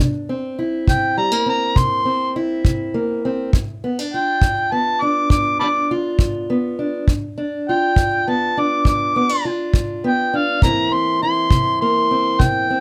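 A dark, boxy parlour steel-string guitar opens at 0.0 seconds, fingerpicked up front in a rollicking yet laid-back acoustic country blues at 68 BPM in a straight 12/8. At 0.9 seconds an amplified, overdriven harmonica takes the melody high above the guitar, sounding gritty with light vibrato, scooped notes and tongue slaps in a jazz-inflected solo that sits up front. The kick drum enters at the same moment, a tight, polished acoustic kick with brushes and an airy studio-room quality that keeps it close in the mix. The harmony moves from C7 to G7 and back to C7, and the guitar and harmonica carry on together to the end of this fragment of a longer piece at 12.8 seconds. Close, detailed microphones and light reverb keep the small group intimate and clear.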